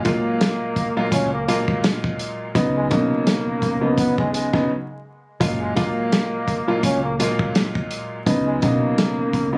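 Soulful and confident, this swung boom-bap hip-hop excerpt opens with a woody, slightly detuned upright piano laying down warm chords under a veiled, breathy trumpet with a bucket mute, whose whispered, scooped lead carries light vibrato and a touch of delay. From the first beat, a dry, muffled soul drum kit with a tight kick sits up front, and a dark, round fingered electric bass joins at 1.1 seconds, with a brief break from 4.7 to 5.4 seconds. The whole recording has a lo-fi, vintage character, captured on a phone in the room with vinyl crackle, compression and light studio reverb.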